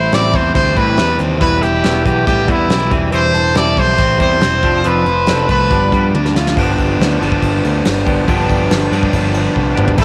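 Cut from a longer piece, this home recording on cassette of restless, bittersweet indie rock sits in a small room with light reverb, led by a brilliant, forceful trumpet whose lightly vibratoed pop-style melody sounds distant yet up front through 6.1 seconds. Beneath it, a biting overdriven guitar riff, a clean electric guitar riff with subtle chorus and analog delay in the background, and a growling, punchy picked bass drive alongside a brushed drum kit with a punchy kick. After a drum fill, a buzzy vintage combo organ with heavy vibrato joins at 6.6 seconds with sustained chords.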